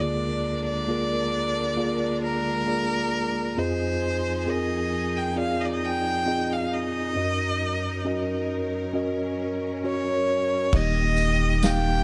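This hopeful, emotional pop ballad excerpt moves at a slow 67 BPM in 4/4 over Bb7/D, Fm7 and Gb6 chords. A clear, focused solo violin carries the melody with vibrato above a mellow, up-front tine electric piano and a bright, lush studio string section holding sustained chords, until the music lands on Eb at 10.7 seconds, where a thick, saturated sub bass and an acoustic small-room drum kit played with bundle sticks arrive and a jingly tambourine joins in the background at 11.2 seconds, all captured in a dry, close 1970s-style studio sound with light reverb.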